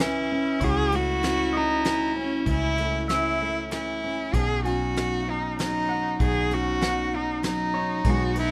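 A close, up-front cello with soft bowed attack, vibrato and portamento carries the melody of this melancholic, intimate acoustic folk-pop ballad in 3/4 at 97 BPM, set in light reverb and cut from a longer piece, with a bright, smooth-topped clarinet playing a second line in the background. Beneath them a dark, full-bodied fingerpicked steel-string guitar and a round, foam-muted vintage electric bass move through C#m, A6/C# and Badd9, while a twangy, slightly broken-up electric guitar picks arpeggios through harmonic tremolo further back. A soft brush kit with a fat snare and punchy kick on ride cymbal keeps a straight, smooth pulse throughout the 8.5 seconds.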